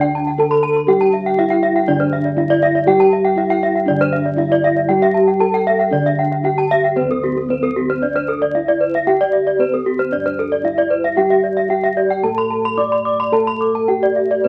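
A bright horn-mallet metallophone spins shimmering arpeggios from the start, joined at 0.2 seconds by a second bright, up-front horn-mallet metallophone spanning a slightly broader register, both with the beating sparkle of paired tuning. Beneath them, in this brilliant, ceremonial Balinese gamelan passage in D slendro at roughly 105 to 120 BPM in straight 4/4, a mellow, dark metallophone carries the melody with padded mallets, and round, soft bossed gongs hold the bass. A dry, full-sounding lower metallophone adds accompaniment that drops out at 7.0 seconds and returns at 11.2, all heard through a moderate club reverb and the crackle of a very old 78 rpm record, in a fragment cut from a longer piece.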